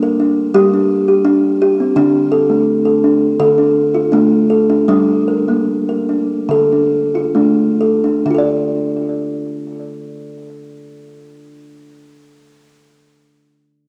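A hollow, woody kalimba rings up front through cassette tape, tape echo and a moderate spring reverb in a small home room, playing a hypnotic, meditative world-music solo in D minor at 64-85 BPM in straight 4/4 that slows between 2.0 and 8.3 seconds before moving into a new section on a D minor chord in this 12-second fragment of a longer piece.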